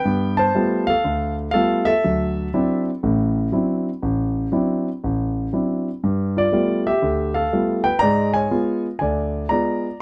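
A warm concert grand piano plays alone in this short solo jazz cut from a longer piece, its deep bass and short sustain placed up front through close, detailed microphones with light reverb. The relaxed swing feel moves through G9 and D9 chords before closing on a G#dim7 at 8.0 seconds.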